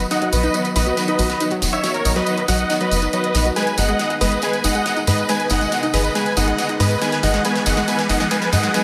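Straight trance momentum drives this emotional, uplifting build-up, with a layered electronic drum kit running a fill throughout, its huge snare and hi-hats filtered thin, alongside a jingly, close tambourine and a tight, punchy, saturated sequencer bass sitting dark and up front. A thick, detuned supersaw lead carries the melody through cassette-tape grit, a low-pass filter and dub echo, while a round, warbling analog pluck arpeggiates under a filter sweep, chorus, phaser and its own dub echo, and a clear studio string section holds bowed chords in the background. The harmony moves from B to G# minor at 3.6 seconds, and a background riser enters at 5.5 seconds, all set in a lush hall reverb.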